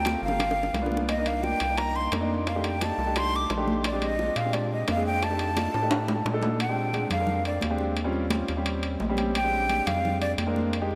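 Sunny and lively, this Afro-Cuban jazz excerpt moves at 174 BPM in a straight 4/4, set in a vast, echoing space with a long cathedral reverb. A breathy, bright flute carries the melody up front, its close-miked, reedy straight tone ranging from D5 to D6, and from 6.6 seconds it takes a solo. Grand piano accompanies with an intimate, natural sound, long sustain and audible action noise, adding a brief fill at 8.8 seconds over harmony built on thirteenth chords such as F13, Bb13 and Eb13. Underneath, a rubbery, hollow square-wave bass gives bouncy, nasal low notes with a fast filter pluck and mellow sustain. The percussion pairs ringing metal-shell timbales with high-tuned, thick-skinned congas sitting in the background, while round, low-tuned bongos, very quiet and dry under soft hands, drop out at 6.4 seconds, and drum fills mark both the opening and the turn into the second section.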